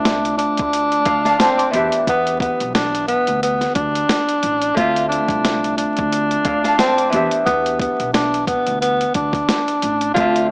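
Boom-bap hip hop with a tough, moody edge, this short cut from a longer piece rides a swung groove that alternates between Dm9 and Em7 chords. A breathy tenor saxophone carries the melody up front, playing a mellow, intimate jazz-style solo with vibrato, scooped notes and a whispered, soft attack, filtered and trailed by digital delay. Beneath it, a Celtic harp fingerpicks bright, ringing accompaniment with a cassette-tape tint, while a woody pizzicato upright bass sits low in the mix. A gritty sampler-style drum kit enters at 0.1 seconds, compressed and pitched down, with a thumpy kick, high-tuned snare and hi-hat. Light reverb, vinyl crackle and a small-speaker sound color the whole recording.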